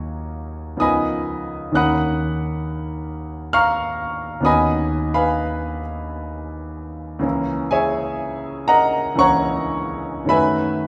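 A warm concert grand piano, deep in the bass, smooth and up front, carries this hazy, nocturnal impressionist classical excerpt alone in a slow, rubato 3/4 at 51-68 BPM, drifting through lush ninth and thirteenth chords before settling into C# dorian at 7.2 s, all bathed in the wet reverb of a recital hall.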